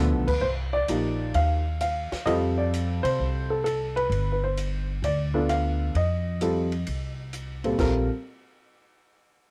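Jazz piano trio cut from a longer piece, relaxed and playful at 130 BPM with a swung 4/4 feel: a woody, slightly detuned upright piano with short sustain carries the melody up front over Cm7, F, G7 and F7, a thumpy pizzicato upright bass on steel strings sits close alongside, and a compact cocktail kit with dark cymbals, a high-tuned snare and a punchy kick enters at 0.3 s, while the piano and drums carry a cassette-tape tint in an intimate, dry home recording.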